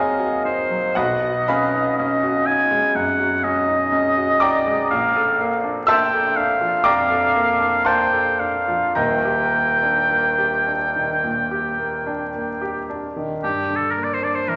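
Impressionist classical duo in a wistful, hazy mood, moving at a slow, rubato 52-63 BPM in 4/4, taken from a longer piece. A solo oboe carries the melody up front with vibrato, a smooth top and classical poise. The intimate concert grand piano accompanies with deep bass, natural tone and audible action noise, through chords such as Ebm6, B69, Bbmaj7 and Ebmaj7 before a shift to Gm at 13.4 s. Both sit in a wet recital hall reverb under a veil of vinyl crackle and a dulled, rolled-off top end.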